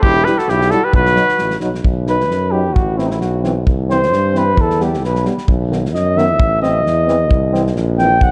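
In a swung 2/4 at 132 BPM, a loose drum kit with a tight kick and medium-tuned snare drives this fiery, virtuosic Balkan brass band fragment in B phrygian dominant. A mellow, lightly vibrato trumpet carries the melody up front only until 1.6 seconds, while the close-miked flugelhorn, colored by analog delay, plays a second line from the start and then takes over with a solo from 1.8 seconds over a distant, roomy tuba bass. A very quiet, soft-edged trombone adds accompaniment alongside a punchy French horn that sits in the background, and the whole is wrapped in a dark production with moderate scoring-stage reverb.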